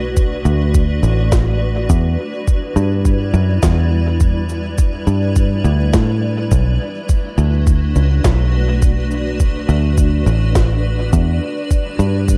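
Ambient dub with a spacious, meditative mood, this passage from a longer piece sets a detuned, granular cloud pad holding blurred, slowly blooming chords in its own reverb against a punchy, foam-muted fingered electric bass up front. From 0.2 seconds a muffled, pitched-down, thumpy electronic kick drum with a tape-warm character anchors a lightly swung groove, while electronic cabasa and a woody, overdriven snare drum sit further back with dub echo. The chords move between Bm7 and Em7, and apart from the pad's reverb and the percussion's echo the room sound is close and dry.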